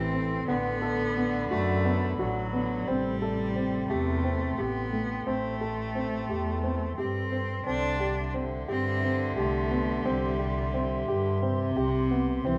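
A straight, uneven 7/8 pulse drives this urgent, pensive piece of contemporary chamber music, cut from a longer work. A bright, biting bowed cello carries the melody with vibrato and an intense edge until 11.1 s. Beneath it sit a second cello line with a reedy, gut-string period tone, a dark, mellow baby grand playing short-sustained arpeggios, and a rich, smooth bowed double bass up front. Above them, a warbly, lo-fi tape-like pad holds nostalgic sustained chords through chorus and its own reverb. Close, detailed microphones and light reverb frame the sound, and the harmony shifts to C at 7.7 s as a new section begins.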